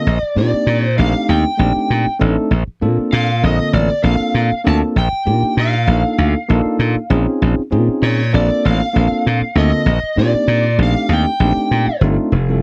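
An overdriven lead guitar from a small cranked amp opens this funky, soaring jazz fusion fragment, picking a high melody with a slapback echo alongside a clean, bell-like tine electric piano that lays down lush ninth and thirteenth chords. A glassy, punchy slap bass joins at 0.1 seconds and sits up front, while the groove carries a light sixteenth-note swing. The sound is dry and close, with only light reverb, in the manner of a 1970s studio, and the piece is cut from a longer performance, with the guitar stopping at 12.0 seconds.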